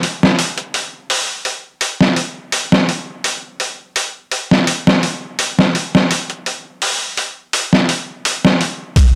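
Trip hop in a brooding, melancholic mood, this short excerpt lays out a slow groove with a slight swing on the sixteenths. The only part is a sampler-style drum kit playing throughout, built from hi-hat, kick drum and snare drum. Its sound is pitched down, compressed and gritty, with a thumpy kick and a medium-tuned snare pushed through overdrive. The kit sits up front in a small room ambience, and the whole recording carries a light digital reverb. Cut from a longer piece, the passage stays within a single section for its full length.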